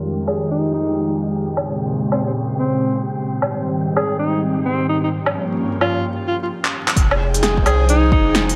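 Vinyl crackle and a dusky low-pass filter hang over this short cut from a longer future garage track, set in light digital ambience with a melancholic, rainy mood and a swung 4/4 groove. An airy, detuned pad with chorus and phaser sustains chords throughout under a filter sweep, while a felt-muted upright piano sits in the background, soft and intimate with audible action noise, pumping and echoing through analog delay. Up front, a breathy alto saxophone carries the jazz-style solo, its subtone, scooped notes and light vibrato roughened by 12-bit sampler grit and delay, as a wind-like tuned noise texture drifts behind it. The garage drum kit brings a cracking snare, crisp hats, handclaps and woodblock with a tape-tinged color, closing the first section with a fill at 6.6 seconds. At 7.0 seconds a round sine sub bass and a deep, overdriven electronic kick arrive, the bass pumping as the harmony returns to its opening chord.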